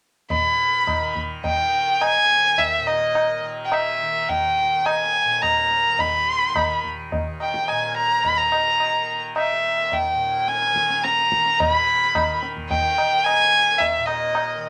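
Hindustani classical music in a devotional, radiant mood, set in raga bhairav on Eb, moving in 5/4 at 107 BPM and gradually speeding up through this excerpt from a longer piece. A single bowed violin carries the melody up front, its rich, focused tone laced with vibrato and a slightly boxy edge. Beneath it a softly plucked tanpura holds a bright, buzzing, shimmering drone, while low-tuned tabla with a short ring keeps time in a moderate studio reverb, and a new section begins at 11.6 seconds.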